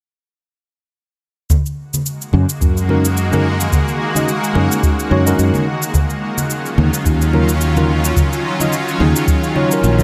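A smooth, sunny sunset chillout cut at 108 BPM with a swung 16th feel in F# major opens at 1.5 seconds with a deep analog electronic kick, layered cabasa and bright, saturated congas set in the background, before a dark, round fretless electric bass sits up front alongside a shimmering, ethereal ambient pad with detuned chorus and octave-up shimmer at 2.3 seconds, and a clean tine electric piano carrying vintage 12-bit sampler grit and tape echo joins at 2.9 seconds as the harmony moves from F#69 to D#m9 under light reverb.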